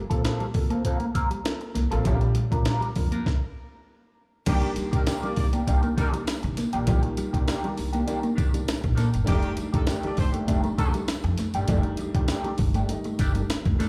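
A sly, driving funk excerpt opens on a compressed electric guitar riff tucked in the background, joined almost at once by a clean guitar through wah, phaser and slapback echo, a dark, slightly detuned upright piano playing stabs with audible action noise, a woody pizzicato upright bass, and a gritty, pitched-up sampler-style breakbeat kit with a thumpy kick and high-tuned snare up front, the band heard live through a venue PA with club reverb; after a stop from 3.3 to 4.5 seconds, a tight horn section with light vibrato plays a second line until 10.9 seconds while a jingly tambourine sits in the background.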